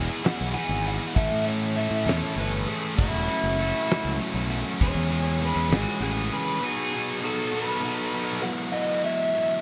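A raw garage guitar carries the melody, its overdriven, lo-fi tone delivering a solo from its entry at 0.3 seconds through 8.4 seconds in this carefree yet wistful indie rock excerpt. Beneath it, a thick fuzz guitar sits up front with a dark, picked riff, while a high-gain distorted guitar adds a second riff touched with subtle chorus. A growling fingered electric bass, overdriven and direct, anchors the low end. Alongside it, a loose acoustic drum kit brings a fat snare, a punchy kick and a rolled-off top, and a jingly vintage tambourine stays in the background. At a relaxed 66 BPM in 6/8, the chords move from E through A, F#m7, C#m/E and B7 before settling on Bsus4 at 8.4 seconds, with the bass and drums dropping out by 6.5 seconds. A lush hall reverb and bright 1980s-style digital production frame the sound.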